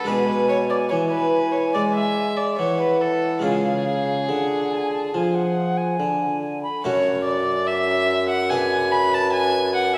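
A wet concert hall reverb, with a 1.9 second decay, surrounds this short cut from a longer baroque-style sonata movement with continuo, set in F# minor at 72 BPM in a straight 4/4. The mood is flowing and grave. An alto recorder carries the melody with a wooden, airy tone, gentle vibrato, a soft attack with audible chiff, and lifted highs. A single violin plays the second line up front and close, its gut-string, period-style sound nasal and reedy with an airy bow, and it sits louder than the recorder. The harpsichord's accompaniment is bright, plucked and mid-forward, with a Flemish-style single set of strings, while a warm bassoon enters at 0.1 seconds on the bass with light vibrato, also up front. The harmony moves from G#dim over B to C#, and a new section begins at 6.8 seconds on F# minor before turning to G#m7b5 over F#.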